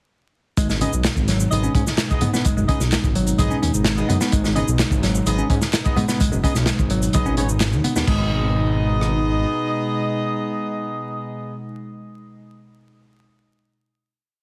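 Breakbeat at 128 BPM in G# minor, funky and gritty, where a crunchy, saturated looped break with edits drops in at 0.6 seconds alongside an overdriven shaker-and-clap layer, a thick, menacing detuned saw bass with tube saturation and a growly picked electric bass riff carrying 12-bit sampler grit and dub echo, with soft close congas joining at 0.8 seconds, while punchy, tight horn stabs with their own dub echo and a warbling, nostalgic tape-like pad with chorus and sidechain pumping carry on to a final chord from 8.1 seconds, all framed by a heavily compressed radio sound and vinyl crackle.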